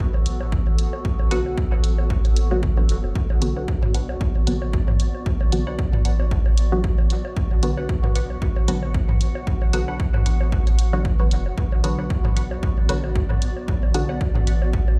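A dry, punchy electronic kick sits up front at 114 BPM in 4/4, with a lightly swung sixteenth-note feel carried by a dry analog hi-hat and overdriven electronic bongos and toms that pass through dub echo and sidechain pumping. This is a cavernous, hazy dub techno passage in B minor, cut from a longer piece and resting on a single Bm chord. Underneath, a soft, round sub bass with tube saturation holds the low end in the background. A granular cloud pad drifts through sustained chords, blurred, evolving and slow to swell, breathing with sidechain pumping. From 1.3 seconds a muted, deep sawtooth chord stab plucks short filtered hits through chorus, phaser and dub echo. At 3.6 seconds a second, brighter stab riff enters higher up in the background, detuned and gritty with vintage 12-bit sampler character. The whole mix sounds as if played on a big sound system in a bare room, washed in large studio reverb.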